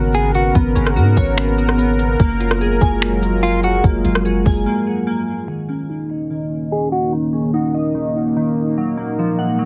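A heavily compressed, radio-style mix with little reverb carries this floating, blissful cloud-rap excerpt at 146 BPM in a half-time feel, where a dark, detuned analog pad with sidechain pumping and glassy digital key arpeggios through tape echo sustain throughout, a deep sine 808-style bass and an up-front, overdriven R&B kit of soft kick, crisp hats, finger snaps and rim clicks fall away at the break around 4.7 s, a clean, fingered electric guitar adds brief echoed phrases, and a filter sweep runs from 5.5 s as the chords move from G#m11 and F#maj9 to D#5.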